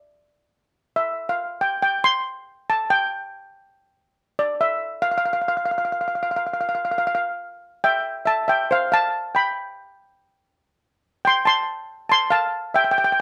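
Bouncy and sunny, this short calypso passage, cut from a longer piece, moves at 140 BPM in 4/4 with a light swing on the sixteenths. A single lead steel pan carries the whole 13.2 seconds alone, struck with hard rubber sticks and ranging from C5 to C6. Its tone is bright and metallic with a shimmering edge, and a slapback echo trails each note. Close-miked and full, the pan sits up front in an outdoor setting with little reverb and little sense of a surrounding room. The opening stretch runs to 7.8 seconds before a second passage begins, where the harmony touches F at 8.7 seconds and later moves through C5 before settling back on F at 12.1 seconds.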